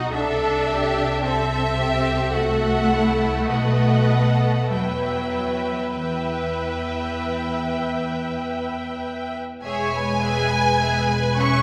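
Clear, intense first violins carry a yearning, lush melody above smooth second violins, bright and focused violas, rich cellos and a double bass section set up front, every part bowed with vibrato, in this melancholic slow romantic movement for string orchestra in E minor at 48-56 BPM with rubato, heard in a reverberant hall and arriving on an E chord at 9.6 seconds.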